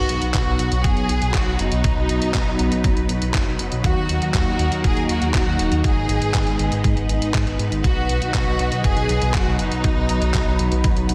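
Soaked in hall reverb, this dreamy italo disco excerpt moves at 120 BPM in straight 4/4 and B major with a romantic, sunny glow, its chords passing from B through D#m and G#m back to B. A vintage string machine holds full, phased, ensemble-chorused chords up front beneath a distant studio violin section, which carries the vibrato-rich melody through a diffuse delay, while a glossy, evolving synth bass of pulse and sawtooth waves anchors the low end. A clean 12-bit sampler-style drum machine brings in handclaps and hi-hat at 0.1 seconds, and a thumpy, tape-tinged electronic kick joins them at 0.3 seconds.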